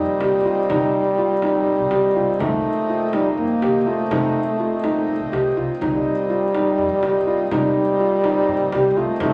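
A wet recital-hall reverb surrounds this hypnotic, urgent passage of contemporary chamber music in 7/8, cut from a longer piece and resting on a single C minor seventh chord. Up front, a French horn with light vibrato carries a warm, classical-style second line over the reedy, nasal breathing of a hand-pumped harmonium's sustained chords and a woody pizzicato upright bass. From 0.2 s, a felt-muted upright piano adds soft, boxy arpeggios with short sustain, while a deep, saturated frame drum struck with hard hands sits in the background.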